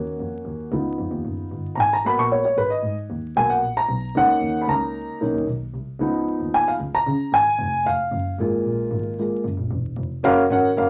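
A straight 4/4 pulse at 113 BPM drives this uptempo 1960s-style soul piece in F# major, joyful and warm in mood, cut from a longer performance. An upright piano carries the accompaniment and takes a solo from 0.0 to 10.2 seconds, its dark, mellow, woody tone sitting up front with a boxy, intimate character, long sustain and audible action noise. Beneath it, a single bowed double bass plays smooth, even lines with vibrato, set lower in the balance than the piano. The harmony moves from F# through C#7 and G#m7 to Bmaj7, then returns through C#7 to settle on F#maj7 at 8.1 seconds. A wet studio ambience with a short reverb tail surrounds the players, and a layer of vinyl crackle lends the sound a vintage patina.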